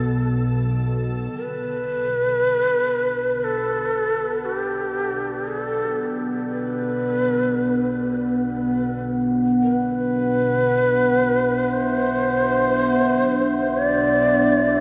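Desolate and unsettling, this dark ambient drone in free time and B phrygian sets a breathy, mellow shakuhachi melody with delay up front over a tense, string-like bowed drone, while a very quiet bronze metallophone rings out arpeggios until 7.5 seconds, an icy glass pad glints in the background for the first 1.4 seconds, and a deep, moody analog pad with chorus and phaser enters at 2.3 seconds as the drone fades in, all within a vast, echoing space.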